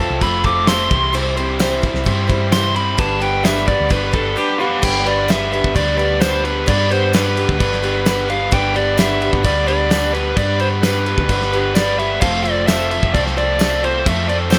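Folk rock with a heartland rock drive, this nostalgic, warm excerpt moves at a brisk, straight four-beat pulse. A dark, smooth overdriven lead guitar carries the melody from the start, taking a solo through the first 4.8 seconds before the music moves into a new section. Beneath it, a bright, boxy parlour-style steel-string acoustic guitar is picked with fresh strings and audible finger squeak, while a double-tracked overdriven electric guitar plays a riff. A round, punchy hollow-body short-scale bass is fingered, and a cloth-damped drum kit enters at 0.2 seconds with a thuddy, fat snare, tight kick, dark crash cymbal and rolled-off top. A jingly tambourine joins at 0.7 seconds, sitting in the background, and the harmony moves from F through C and G before returning to F, all under light reverb.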